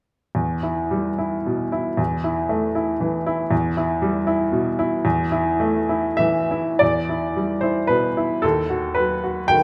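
A clear, woody upright piano sits up front in a wet recital hall, playing a bittersweet, passionate romantic character piece in E minor and 3/4 with free rubato between 90 and 122 BPM, its short-sustained notes turning between Em and A5/E before a second section begins at 6.8 seconds and reaches B7/D# in this brief cut from a longer work.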